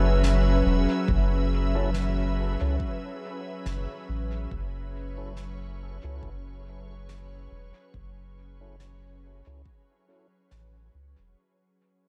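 A dreamy, reverb-soaked mix in a cathedral-like space opens this short cut from a longer ambient dub piece, a spacious, meditative passage at 70 BPM in F# minor, resting on a single F#m7 chord and fading out across its 11.4 seconds. Up front, a pure, detuned organ-like pad holds slow-attack chords with ensemble chorus and its own reverb, while a round, soft sub bass sits deep beneath it, and a layered electronic kick drum thuds from 1.1 seconds. In the background, a high-tuned brushed snare trails dub echo, and lightly overdriven tonewheel organ stabs with key click and a stopped rotary speaker drift through a filter sweep and echo of their own.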